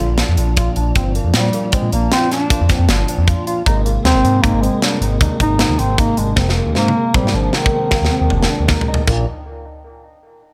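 A mellow bass clarinet carries the jazz-style melody with vibrato and subtone over a round, dark tonewheel organ swirling through a fast rotary speaker, barky tine electric piano arpeggios with phaser and tape echo, and a smooth sawtooth synth bass that glides between notes. This is a driving, intricate progressive instrumental in 7/4 at 155 BPM in Bb mixolydian, moving from Bb to Abadd9 at 3.7 seconds and back to Bb. A tight metal drum kit with bright cymbals sits up front from 0.2 seconds, playing a drum fill from 6.4 to 9.1 seconds before the cut from a longer piece ends.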